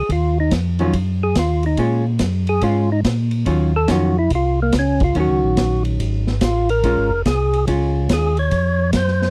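A percussive tonewheel organ opens this bluesy, smoky soul jazz organ trio excerpt at 0.0 seconds, carrying a fat, lightly overdriven melody through a slow rotary speaker. Beneath it, a second tonewheel organ supplies a mellow, round bass line with chorus vibrato and audible key click, also turning on a slow rotary. A vintage acoustic drum kit swings at 143 BPM in 4/4 on hi-hat, kick, ride and snare, with dark cymbals, a punchy kick and a rolled-off top. From 0.8 to 8.3 seconds, a miked hollow-body archtop guitar adds clean, picked accompaniment. The harmony moves through Ebmadd9, Bbm7 and Ebm9 in a dry, close 1970s-style studio sound that keeps the organs and guitar up front.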